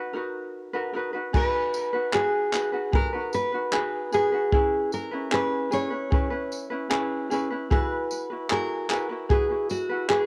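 Tender and reflective, this short cut from a longer acoustic pop piece moves at an unhurried, straight pace in four. A fingerpicked ukulele opens alone, light and warm with a cassette-tape grain, sounding its chords up front before a compact cocktail drum kit and a nylon-string guitar join around 1.3 seconds. The kit is dry and punchy, pairing a firm kick with dark crash cymbal, handclaps and tambourine. The nylon-string guitar carries the melody in a bright, classical fingerpicked voice with fresh strings, its sound colored by cassette tape and a tape echo. Chords drift through minor sevenths toward a closing add-nine shape, and the whole takes place in a small room with light reverb, like a home recording on cassette.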